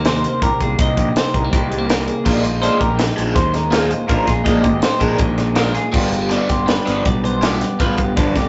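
Up front, a crisp fusion drum kit with a high-tuned snare, tight kick, crash and hi-hat drives this restless, intricate math rock and midwest emo excerpt in 5/4 at 163 BPM in C minor, alongside a clean electric guitar and a twangy twelve-string electric guitar picking arpeggios, both with spring reverb, plus a growly fuzz fingered bass, while a bright, double-tracked overdriven guitar riff with phaser enters at 2.3 s over chords moving from Cm7 to Bb7sus4 and G7, all in a rough rehearsal-room recording with tube saturation and a dulled top end.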